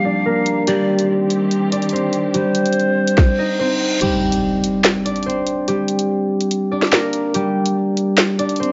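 This short drill excerpt sounds like a worn, warbling old cassette, its pitch drifting and its top end dulled, set in a small room with light reverb. A ringing, fingerpicked concert harp carries the cold, menacing melody up front in a half-time feel, softened by a low-pass filter. Breathy, bright cane pan pipes with a crisp, chiffy attack add a second line through tape echo, over a distant, woody string section that holds lush, bowed chords with vibrato. The electronic drill kit arrives at 0.5 s with a hard-clipped kick, sharp snare, handclaps, crash and warm hats, while a filter sweep runs through the opening bars. A reverse cymbal leads into an impact at 4.0 s, with a downlifter also sounding in this stretch. At that point the pan pipes stop and the kick drops out, leaving harp and the rest of the kit to carry on.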